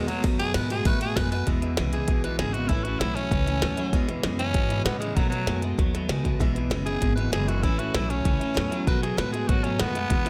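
A straight, driving 4/4 shuffle-free beat from an up-front, glitchy electronic drum kit, with a deep kick, tiny snare and clicky hats, pushes this upbeat, rowdy rockabilly fragment, cut from a longer piece, as a woody, thumpy pizzicato upright bass plays beneath it. A raspy, gritty tenor saxophone carries the melody with punchy vibrato and a touch of tape echo, while a twangy, compressed clean electric guitar with analog chorus plays the riff and a bright, full-bodied steel-string acoustic guitar picks its accompaniment with audible finger squeak. The dry, close sound shifts from a brief opening passage into the main section at 1.5 seconds, cycling through E, A and B7 chords.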